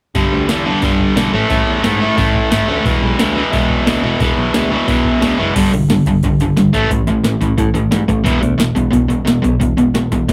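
A booming analog drum machine with a deep kick, crisp snare and metallic hats, roughened by overdrive, starts this urgent, angry punk rock excerpt alongside a growly, punchy picked bass sitting in the background. A scooped, double-tracked distorted guitar sits up front, driving a riff through G5, A5 and E5 power chords that repeats from 5.5 seconds, just after the kick and snare drop out at 5.4 seconds. The straight, fast 4/4 cut has the rough feel of a rehearsal-room recording in a small room with moderate reverb.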